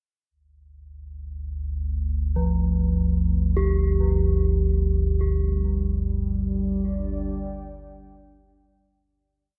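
Unfolding in free time, this whole piece of dark ambient drone feels ominous and unsettling, tuned slightly low to A4 = 439 Hz and built around a G5 chord. A deep, rumbling synth drone enters at 1.2 seconds and sits up front, its detuned triangle and sawtooth tones rising on a slow attack and trailing off with a long release through built-in reverb and analog chorus. At 2.4 seconds a bronze, gamelan-type metallophone joins with ringing, airy arpeggios struck by a wooden mallet and treated with delay, forming two slow loops of unequal length that drift against each other. From 5.4 seconds a moody, warbling pad of detuned sawtooth and sine layers with a sub octave adds slowly shifting sustained chords, its vintage character coloured by chorus and built-in reverb. The drone and metallophone fade in across the piece while a fade-out begins at 4.7 seconds, all set in a light reverb.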